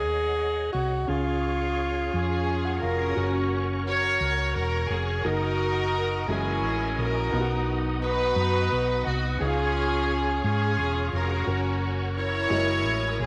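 A moderate plate reverb surrounds this short, uplifting slow gospel excerpt in F# major, which moves at 58 BPM in a straight 6/8 with a hopeful glow. A breathy, subtoned alto saxophone carries the melody for the opening 2.8 seconds, and a clear grand piano with audible action noise adds a fill from 2.1 seconds. A close, floating string section, bowed sul tasto with a soft attack and a slapback echo, takes over the melody from 2.1 seconds, over a round, dark hollow-body electric bass up front and a reedy tonewheel organ whose sustained chords shimmer through a fast rotary speaker and chorus vibrato, as the harmony moves from Bmaj7 and C# to resolve on F# and F#13.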